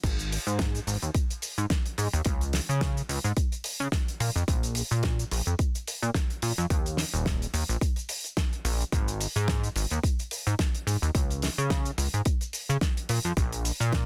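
A groovy, sunny nu-disco drop at 108 BPM with a light 16th-note swing opens at once with a punchy, layered electronic kick, a damped 70s kit of fat snare, dark cymbals, hi-hat, crash and cabasa, and a glossy, chorused pulse-wave synth bass with a plucky filter ranging from Eb1 to Db3, all up front in a dry, dense, heavily limited mix cut from a longer piece.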